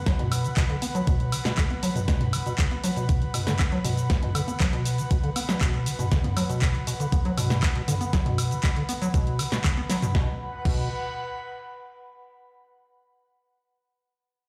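Ringing through a bare stone room as if played on a big sound system, this hypnotic, trippy acid house excerpt sets a squelchy, resonant square-wave acid bass riff, tube-saturated, chorused, delayed and filter-swept until 10.1 s, against a thumpy overdriven kick and a punchy, tape-warm analog drum machine of snare, handclaps, hi-hat, cabasa, crash, toms and woodblock, while a soft, breathy, detuned pad hovers quietly behind with sidechain pumping and lingers alone until 12.1 s.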